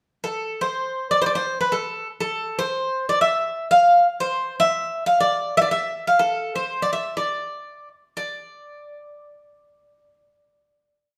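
A straight 2/4 pulse at 121 BPM carries this brief, brooding Greek folk piece in D minor, with a single acoustic bouzouki playing alone from 0.2 to 11.2 seconds. Picked up front on metallic double strings, some doubled at the octave, it spins an ornamented modal melody between A4 and F5 before settling on a final note at 8.2 seconds. A wet stone-room reverb lends the live performance a cool, shadowed air.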